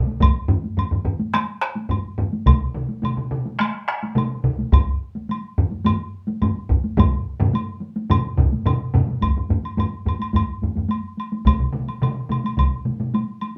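A live small-room sound with a short, wet reverb frames this ceremonial, powerful fragment of Japanese traditional taiko drumming at 107 BPM in a straight 4/4, where several taiko groups struck with hard sticks sit up front (one close and dry) over a quieter, woody woodblock, another taiko group joins at 2.5 s, and the piece moves into a new section at 9.2 s.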